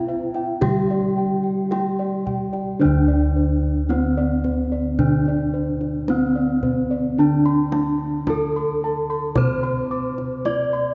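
Serene and shimmering, this slow Javanese gamelan excerpt in D slendro moves at 55 BPM in a straight 4/4. A bronze metallophone carries the melody up front, struck with a wooden mallet so its paired tuning rings with beating shimmer, while a second metallophone with padded mallets lays down a mellow, dark accompaniment and a third, soft and distant, adds arpeggios only until 2.8 seconds. Bossed gongs spin round, mid-forward arpeggios above a smooth, padded gong bass, and a kendang played with soft hands sits tight and close, all bathed in a long, wet church reverb with a dull top end.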